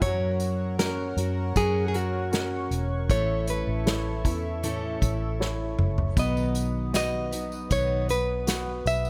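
This heartfelt, hopeful pop ballad moves at a slow 78 BPM in straight 4/4 in B major, and it is cut from a longer piece. A classical nylon-string guitar carries the melody with a touch of delay. It sits over a natural-sounding baby grand piano and a fingerpicked steel-string acoustic guitar rolling out concert-style arpeggios. Above them, a shimmering, retro pulse-width pad holds soft-attack chords with chorus. A dark, round, foam-muted electric bass sits punchy and up front beside an acoustic drum kit played with bundle sticks, with its punchy kick and medium-tuned snare. The chords move from F# to A, and after a drum fill from 5.4 to 6.2 seconds the harmony lands on B as a jingly, close, dry tambourine joins in the background, all within light reverb and small-room ambience.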